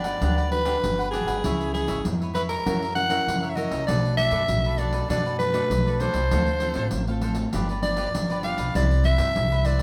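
A growling soprano saxophone carries the melody up front in this lively, festive samba and choro excerpt, its bright, raspy tone close-miked and full of vibrato, subtone and scooped notes in a jazz-style solo voice with a soft attack. Just beneath it, an upright bass plays pizzicato, woody and thumpy, its steel strings sitting prominently in the mix. A fingerpicked nylon-string guitar with fresh strings adds classical, warm accompaniment, while a picked cavaquinho contributes crisp accompaniment higher up. A jingly pandeiro played with soft hands sounds distant, as if across a large room. The band plays live together in one room at a straight 98 BPM in 4/4 and G major, moving through Gmaj7, C#m7 and F#7 toward Dm7, G7 and Cmaj7 across all 9.8 seconds, with moderate studio reverb around the ensemble.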